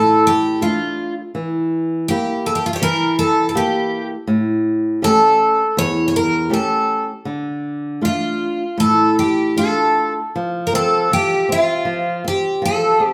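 Rubato and loosely flowing around 80 BPM in 4/4, this tender, nostalgic fado-style ballad excerpt in D harmonic minor sets a bright, shimmering, octave-doubled twelve-string acoustic guitar carrying the picked melody up front over a fingerpicked flamenco guitar accompaniment, both heard together throughout the 13.1 seconds in a live room with a wet stone reverb, moving through Dm, Edim and A7 before a new section opens on an F5 chord at 10.3 seconds.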